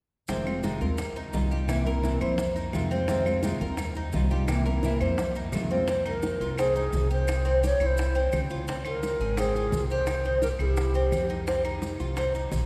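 A straight, danceable Cuban son and guajira groove in four is carried by round, low-tuned bongos and woody claves in the background and grainy, distant maracas, under a thumpy, dark, gut-strung upright bass up front and metallic, double-string arpeggios on the Cuban tres. A full-bodied, fingerpicked classical nylon-string guitar with audible finger squeak accompanies until 5.9 s. At 6.1 s an end-blown long shakuhachi takes the melody with airy chiff, tongued notes, vibrato and rolled-off highs as the harmony moves from C toward Dbmaj7. The whole nostalgic piece sits in a wet cathedral reverb with a long, church-like tail.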